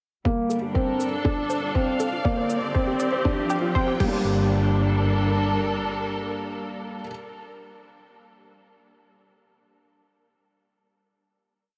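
Bathed in a huge ambient reverb, this moving, cinematic piano and strings electronica piece in G minor runs at 120 BPM. A felt-muted upright piano plays a mellow, intimate ostinato up front, with audible action noise and tape echo, over lush con sordino strings holding slowly shifting chords and a double bass section sustaining a veiled low G. A muffled, pitched-down four-on-the-floor kick, a restrained electronic shaker and crash, and a warbling, lo-fi pluck arpeggio in the background, with a filter sweep and a 6-step loop drifting against the bar, drive a build-up that a riser joins at 2.0 s, before everything gives way at 4.3 s to a final chord carried by the piano, strings and double bass.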